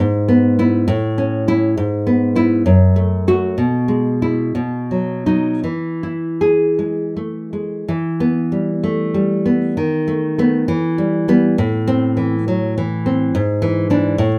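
Warm and sunny in mood, this short romantic excerpt for solo classical guitar unfolds in 6/8 with a freely breathing rubato feel. A single fingerpicked nylon-string guitar carries the whole piece from start to finish, sitting up front with a woody, full-bodied tone and the mellow character of old strings. Its range stays in a deep classical register, reaching from F#2 up to G#4. The opening section moves through chords such as E/G#, A, F#m and B before settling on E, and a second section begins at 7.9 s, shifting to Em, B7/D#, Am and closing on E7/G#. A moderate small-room reverb and a rough home-demo mix give the sound an intimate, unpolished presence.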